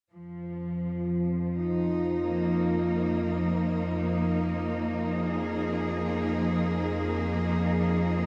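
In free time, this dark, desolate ambient drone excerpt in F minor, tuned to A4 = 439 Hz, sets a clear, smooth bowed cello section holding sustained chords with vibrato under shimmer reverb from 0.1 s against a detuned, warbling sawtooth and pulse-wave analog drone with chorus entering at 0.5 s, both up front, while a very quiet, flickering, grainy granular texture joins at 0.7 s, all within a vast, echoing cathedral space.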